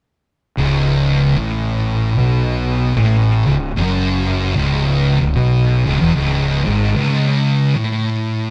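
Swung eighths at 75 BPM in 4/4 drive this heavy, sludgy slice of metal, where two thick, distorted fuzz guitars play a low riff up front over a C#5 chord, one dark and the other warm. A round, punchy fingered electric bass with overdriven fuzz sits beneath them until 6.9 s, and the guitars carry on alone over an unharmonized passage from 7.0 s to 8.5 s. The band sounds as if it is playing live in a reverberant stone room.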